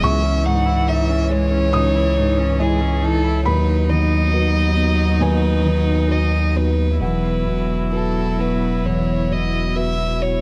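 A saturated, sine-based sub bass sits up front from the start, its deep, thick tone anchoring this fragile, longing neoclassical excerpt for piano and strings in C# minor, tuned to A4 = 437 Hz. Over it, a solo violin carries the melody with light vibrato and an airy sul tasto bow, joined by a single cello on a second line and a rich viola filling in accompaniment, all three played closely with soft attacks. A felt-muted upright piano adds a mellow, vintage accompaniment, its thick felt and audible action noise giving an intimate, dark colour. Further back in the mix, a very quiet, warbling tape-like pad of detuned sawtooth and triangle tones holds sustained chords with chorus and phaser, adding a nostalgic lo-fi haze. The rubato 4/4 pulse drifts between 65 and 71 BPM as the harmony moves from C#madd9 to B/D# at 3.5 seconds and Esus2 at 7.0 seconds, captured with close, detailed microphones and light reverb.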